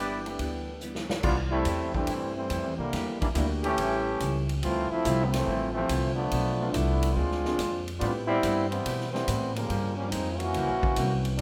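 A clear, up-front trombone section takes a smooth-topped solo from 1.2 seconds in this energetic, swinging big band excerpt, after a brief mellow, distant saxophone line and a drum fill, with woody pizzicato upright bass, an acoustic drum kit with a punchy kick, and a background of short-sustain baby grand piano and clean, compressed hollow-body electric guitar, all set in a large studio's moderate reverb.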